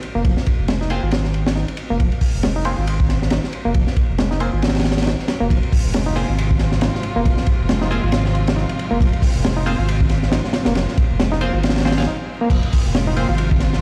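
A swung 137 BPM breakbeat groove in 4/4 drives this energetic, gritty clip in F minor, cut from a longer piece and resting on a single Fm chord. The crunchy drum kit sits up front with a punchy kick, a high-tuned snare, dark cymbals across hi-hat, ride and crash, and a saturated, rolled-off top, while a deep, thick sine sub bass holds the low end with a fast attack. A reedy, bright electric piano riff shimmers with fast tremolo, vintage 12-bit sampler grit and dub echo, and a nasal, band-passed sawtooth chord stab with ring modulation decays through phaser, lush chorus and its own dub echo. At 5.5 seconds a rich, bowed string section enters with smooth vibrato, its sustained chords pumping against the sidechain. After a short break at 12.1 seconds, the drop lands at 12.5 seconds, all of it heard as if played on a big sound system in a bare room, with a large studio reverb and vinyl crackle.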